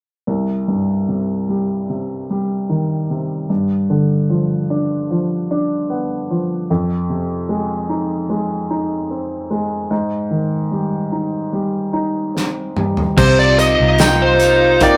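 Recorded with a rough rehearsal-room feel and wet reverb, this longing, heartbroken pop ballad in C minor at 74 BPM opens with a natural, up-front baby grand piano alone from 0.3 s over Cm, G7, Fm7 and Abmaj7, until a polished, airy drum kit with a tight kick enters at 12.4 s with a fill, and at 13.2 s on Cm7 a smooth, overdriven lead guitar takes the melody, joined by a dark, round, foam-muted fingered bass, a clean, compressed direct electric guitar playing arpeggios through delay, a soft-attack sul tasto string section, a tight French horn section with light vibrato, and a jingly tambourine tucked in the background before the cut-off.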